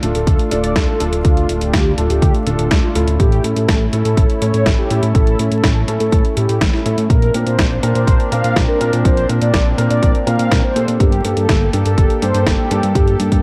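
Bittersweet and danceable, this italo disco fragment moves at 123 BPM in a straight 4/4, set in D minor and cut from a longer piece. A fat, saturated sawtooth bass carries the low end from the start, sitting prominently alongside a punchy, layered electronic kick drum that joins at 0.3 seconds. A clean 12-bit drum machine supplies hi-hat and a medium-tuned snare with a sampler-style character, while a dark grand piano adds mellow, intimate stabs with audible action noise. Behind them, a smooth, slow-attack analog pad holds sustained chords with chorus, and from 0.1 seconds a round, full-bodied synth brass carries the melody, its detuned tone treated with chorus, vibrato and tape echo. The harmony moves from Dm through A and Bbadd9 to Gmadd9, all wrapped in light reverb, a dark, warm production and a layer of vinyl crackle.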